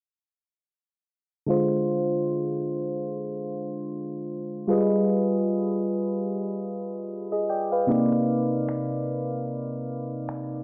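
Set at 75 BPM in 4/4 with a 16th-note swing, this contemporary R&B excerpt carries a sensual, late-night mood. Soft electric-piano-like synth keys carry the accompaniment from 1.5 s, their round, airy tone sitting up front with a mellow chorus shimmer and a fast attack that decays gently. The harmony moves through Dm7b5, G7b9b13 and Cm9, spanning from C3 to G5. Electronic finger snaps arrive at 8.7 s, faint and produced, tucked far beneath the keys. A filter sweep runs across the whole passage, and light reverb lends the sound a digital ambience, with a low-pass filter dulling the top end.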